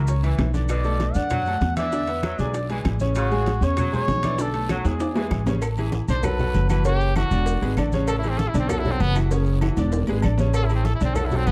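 A dark, warm production with light reverb frames this festive, sunny salsa excerpt in A major, moving at a brisk 195 BPM in straight 4/4. Up front, a thumpy, woody upright bass with gut strings anchors the music, while a brilliant, polished grand piano with short sustain accompanies throughout. A veiled, cup-muted trumpet with light vibrato carries the opening melody over a bright, vintage saxophone section. Around 6.1 seconds, a punchy, bright trumpet with scooped notes takes over for a solo that runs to the end. Behind them sits a busy percussion bed of ringing congas and metal-shell timbales with agogo bells, round, low-tuned bongos with cowbell, raspy guiro, grainy maracas and very quiet claves, with drum fills marking the moments near 4.8 and 9.6 seconds.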